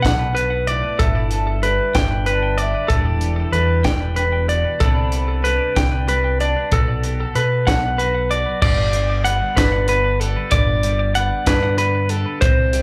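A wistful, playful stretch of math rock and midwest emo in a straight-feel 6/8 opens with every part at once: up-front, twangy clean electric guitar arpeggios ringing high through digital delay and slapback echo over a softer twelve-string electric guitar accompaniment shimmering with lush chorus. Beneath them, an overdriven, punchy fingered bass sits forward, while a crisp fusion kit with a high-tuned snare, crashes and hi-hat, a saturated, gritty tone and a pumping small-room sound drives the pulse. Heard through a club PA with light reverb, the harmony moves through Bm7, G69, Em9, Csus2 and back to Bm7 before settling on Gmaj7 at 8.6 seconds, where the piece is cut off at 12.8 seconds.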